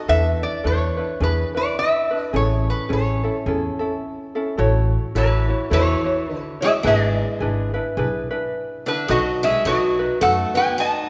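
A lilting swung 4/4 at 107 BPM sets a relaxed, sunny Hawaiian mood in A major, with a metallic, nasal lap resonator guitar singing the slide melody up front over light fingerpicked ukulele and thumpy, woody pizzicato upright bass, while a boxy, bright parlour steel-string guitar joins at 5.2 s with a picked second line and audible finger squeak, all set in a church-like hall's moderate reverb in this short cut from a longer piece.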